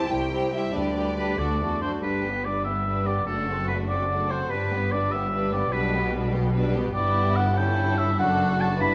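Muted, veiled strings open this lively, graceful passage from a quick classical-period symphonic movement in G major, lilting in 6/8 at 97 BPM with a rubato feel. Chamber violins carry the melody above a second violin line, while a symphonic viola section accompanies and chamber cellos and double basses supply a dark bass, every string section bowed con sordino with vibrato. At 1.2 s a clear, up-front oboe joins with its own second line, set in a roomy recital hall, and from 2.0 s the music moves into a new section whose harmony passes through G and D7/F# before settling on D/F#.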